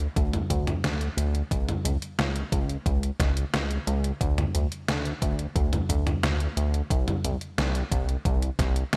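A glossy, nasal chorused synth bass with a fast pluck and sustained tail opens this nostalgic, moody synthwave fragment, cut from a longer piece, alongside an up-front, overdriven, detuned 8-bit drum machine of hi-hat, fat snare and toms that sounds re-recorded in a small room, while a thumpy, overdriven electronic kick joins at 0.2 s, all set in light reverb.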